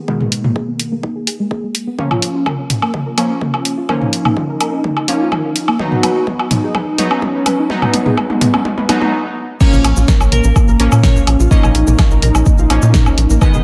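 Cinematic and hypnotic, this excerpt of melodic techno in Bb phrygian moves at 126 BPM, opening with a build-up where a mellow, detuned synth brass melody, a soft round pluck playing dark arpeggios in the background and bright, punchy brass stabs all evolve through filter sweeps, each pumping against a deep, tape-toned kick and a layered deep house kit with a fat snare, hi-hat, toms, woodblock and crash. A drum fill from 2.0 s gives way to a brief stop before the drop at 9.6 s, where a glassy, crystalline wavetable pluck, a grainy close shaker and a tight, saturated sawtooth sequencer bass join over chords moving from Abm through Bbm and B back to Bbm. The drums sit up front in a small re-recorded room, while the whole mix is bathed in a moderate plate reverb and digital ambience.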